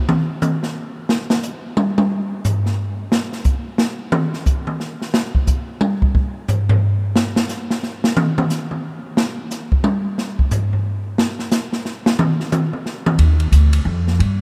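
An open, airy jazz drum kit opens this spiritual modal jazz excerpt with a solo in a swinging 3/4 at 178 BPM, its dark ride and hi-hat cymbals, medium-tuned snare, toms and boomy kick sitting up front in a vast cathedral-like reverb, until a woody pizzicato upright bass enters at 13.2 s as the music moves into a new section.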